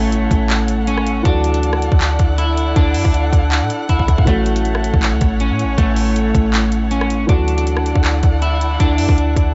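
A half-time trap groove drives this wistful yet triumphant hip hop excerpt: a hard-clipped kick, metallic hi-hats, handclaps and rim clicks enter at 0.1 s and break into a brief fill at 3.9 s, while a deep, boomy sine-toned 808 bass sits up front. A slightly broken-up electric guitar plays fingered arpeggios through analog chorus and digital delay, over dark, vibrato-rich bowed chamber strings holding sustained chords and a soft, felt-muted upright piano tucked in the background. The harmony moves between A6 and Dadd9, and the dry, mellow production keeps the top end rounded and close.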